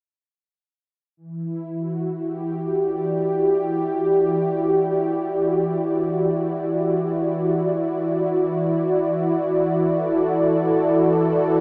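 A soft-edged, detuned sawtooth analog pad sits up front alone from 1.2 to 11.6 seconds in this serene, melancholic ambient fragment, its mellow sustained tone carrying chorus and tape echo as it moves from Em7 to Dadd9/E at 7.5 seconds, all bathed in a huge, wet reverb and the worn, warbling pitch drift of old cassette tape.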